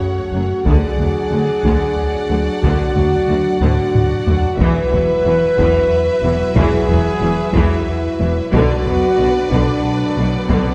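Tense and vast, this cinematic excerpt blends orchestra and electronics at 61 BPM in a slow 6/8, moving through F#m, D, Esus2 and Bm in a dark, warm production with a wet scoring-stage reverb. Up front, a mellow French horn section holds sustained chords while a warm, lush violin section carries the melody over a rich, distant studio violin line, with a background viola section, smooth cello and double bass sections, a rubbery, nasal square bass riff, a shimmering retro pulse-width pad and a very quiet, tine-like synth pluck playing arpeggios. Distant taiko drums with heavy sticks enter at 0.7 seconds and play a fill from 3.6 to 4.6 seconds, and a faint electronic riser arrives at 10.0 seconds.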